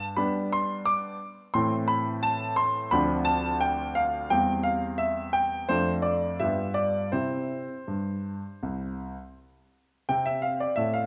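A classical-period piano sonatina, graceful and elegant, this excerpt unfolds in 4/4 with a rubato feel that lets the phrasing breathe. A clear grand piano plays solo throughout, sitting present and up front, its sound ranging from C2 up to D6. The harmony moves from G through Am, Dm7 and C/E, then Dm/F and G7 before settling on C at 7.1 seconds, with a bare C5 sounding at 10.1 seconds. The instrument rings within a wet recital hall reverb that gives each note a lingering, spacious halo. Cut from a longer piece, the passage holds the poised, courtly charm of its period.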